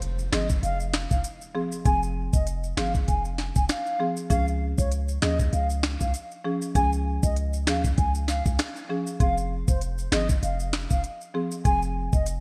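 Dancehall in F minor at 98 BPM, this bouncy, hypnotic excerpt rides a swung sixteenth-note feel, moving from Fm to Db at 4.3 seconds and back to Fm at 9.2 seconds. An electronic afro-pop drum kit sits up front with a knocking kick, sharp snare, smooth hats, finger snaps and rim clicks, all dressed in gated reverb, while a deep, boomy 808-style sine bass with a fast attack and mellow decay anchors the low end. Soft-handed acoustic maracas shake quietly throughout, and a very quiet electronic impact marks the opening 1.9 seconds. From 0.3 seconds, an airy wooden baroque flute carries the melody with expressive vibrato and tongued notes, sounding distant and treated with delay. Beneath it, a buzzing marimba struck with medium mallets on hardwood bars plays a dry accompaniment that pumps with sidechain compression. The mix has a bright 1980s-style digital sheen with light reverb.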